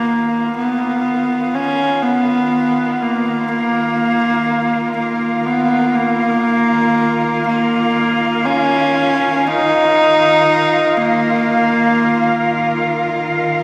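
This ambient passage unfolds in free time, an ominous, desolate fragment cut from a longer piece and resting on an Ebsus2 chord from the start. A bright, husky horsehead fiddle carries the melody from 0.0 to 12.9 seconds between Bb3 and Eb4, its single bowed voice sitting up front with light vibrato, portamento and an airy bow, dressed in shimmer reverb and analog delay. Alongside it, a veiled, con sordino cello section sustains chords from Eb3 to F5, fading in across the full 13.6 seconds and drifting through its own shimmer reverb. The cellos sound dark and close, bowed as an ensemble with vibrato, while the fiddle keeps an earthy edge. A spring reverb with a 2.4-second decay gives the echo-heavy mix its depth, and a faint mains hum lingers underneath.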